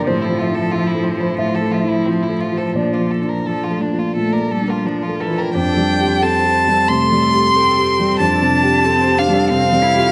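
Close, detailed microphones catch a wet recital-hall reverb with vinyl crackle across this short cut from a longer neoclassical piece for piano and strings, intimate and tender in mood. Set in F major at 89 BPM in 4/4, the playing breathes with rubato and uneven beats, moving from Fmaj7/A to Bbmaj7 before settling on Fadd9 at 5.5 seconds, where a new section begins. A single rich, focused violin carries the melody up front with bowed vibrato, ranging from C4 to C6, while a clear solo cello, also bowed with vibrato, sings a second line beneath it between E3 and E4. A dark, boxy grand piano sits up front as accompaniment, its mellow tone spanning F2 to E5. Further back, an acoustic concert harp rings out fingerpicked arpeggios through analog delay, and all four parts play throughout the 10.1 seconds.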